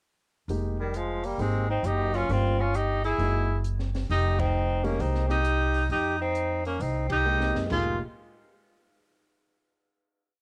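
A clear tenor saxophone leads this brief, cool, late-night small-group swing piece with a bebop-style theme, its scooped notes and vibrato sitting up front yet roomy, while a soft-edged trumpet shadows it in a harmony line mostly in sixths. Beneath them, a woody pizzicato upright bass plays a two-feel, a baby grand piano comps syncopated rootless voicings with audible action noise, and an open kit keeps time on the hi-hat with dark cymbals, a boomy kick and a high-tuned snare. The band hits accents at 4.3 and 7.0 seconds, and a drum fill leads into a final chord held from 7.7 seconds, all with the hazy intimacy of a home cassette recording.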